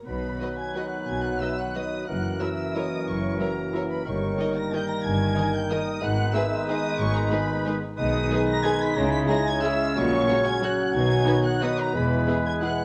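This short cut from a longer orchestral ballroom waltz sounds like worn, warbling old cassette tape with pitch drift, heard in a moderate recital hall. At 182 BPM in B major, the sweeping, festive music moves with uneven, rubato beats. A distant, lush violin section carries the melody with vibrato and portamento, while a close violin section, airy flutes, a mellow clarinet and a roomy oboe add second lines and background colour, a bassoon and a dark viola section accompany, clear trombones and very quiet dark horns hold sustained chords, and smooth cellos and expressive double basses anchor the bass until 12.2 seconds.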